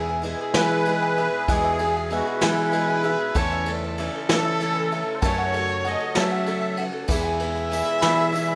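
A steady 6/8 at 64 BPM carries this uplifting, anthemic indie folk excerpt in E major, where a reedy musette accordion sings the melody from 0.6 s over a shimmering, octave-doubled twelve-string acoustic guitar, round mandolin arpeggios, a mellow trumpet second line with light vibrato, a direct picked electric bass, and a very quiet flute-like tonewheel organ on slow rotary, while a vintage brush kit with dark cymbals and a punchy kick drives the building arrangement and a jingly tambourine joins in the background at 7.1 s, all set in a small room with the rough feel of a home demo.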